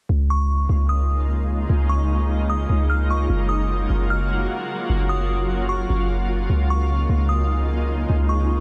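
A deep, boomy 808-style bass opens this short hip hop excerpt at 0.1 seconds, its sine tone carrying a faint noise layer, a fast attack and a mellow decay that sits up front in the mix. A delicate synth tine bell follows almost at once, playing a tinkling, bright FM melody high in the register, softened by a low-pass filter and trailed by chorus and digital delay. By 0.6 seconds a shimmering ambient pad settles in between them with a slow attack, its detuned unison voices, octave-up shimmer and granular texture held in sustained chords through chorus and built-in reverb. At 150 BPM in 4/4 with a half-time feel, the piece drifts in Db major, moving from Db6/9 to Gbmaj7 and back, for a floating, dreamy mood. Light reverb surrounds the whole, and lossy compression artefacts lend the sound a slightly worn edge.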